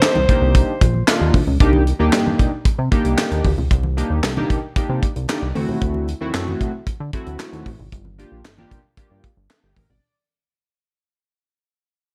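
A breathy alto saxophone opens this early-eighties boogie funk clip with a brief, jazz-style subtone phrase on C5 that ends at 1.1 seconds, carried by a slapback echo. Beneath it, a chorused polysynth lays down full-bodied, glossy chords built from pulse and sawtooth tones with a sub octave and a filter sweep, while a tight funk drum kit sits up front with a high-tuned snare, a tight kick, hi-hat and handclaps wrapped in gated reverb. Very quiet, close and dry congas add a bright, thin-skinned patter, and a chorused synth bass joins at 0.2 seconds with a mellow, retro pulse-width and ring-modulated tone shaped by a filter pluck. At a danceable 114 BPM in straight 4/4 and C minor, the harmony moves from Cm9 to D7 and then Gm7. The funky groove begins fading out at 1.6 seconds as this short cut from a longer piece runs on under a studio reverb.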